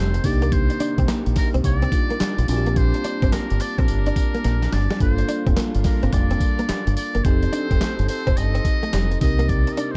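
Opening at once on a round, punchy fingered electric bass, a bell-like tine electric piano, a clean, direct electric guitar riff with ensemble chorus, reedy bowed strings in the background and a buzzy, breathy metal-muted trumpet melody with light vibrato, this bouncy, slick R&B and new jack swing cut at 107 BPM rides a swung 16th feel over a gritty, compressed sampler-style drum kit of thumpy kick, snare, hi-hat, handclaps and tambourine, with a drum fill at 4.4 seconds, as the chords move through Cm7, Bb6, Gm7 and F7 in a dark digital ambience.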